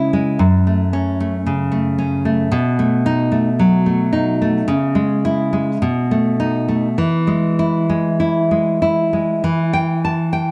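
Set in a 2/4 metre with a free, rubato feel, this short fragment of a romantic solo classical guitar piece drifts along at roughly 48-57 BPM in E major, carrying a sunny yet nostalgic mood. The nylon-string guitar plays alone throughout, fingerpicked and sitting up front, with a deep, warm acoustic body and a finger squeak adding a touch of human presence. Its harmony moves from F#m through B7 and C#m before settling on E at 7.0 seconds, then shifts to a new passage at 9.4 seconds that turns to E minor. A wet spring reverb wraps the instrument in a studio space, giving the dark, warm production a lingering tail. The excerpt is cut from a longer piece and stops at 10.5 seconds, just as that shadowed passage begins.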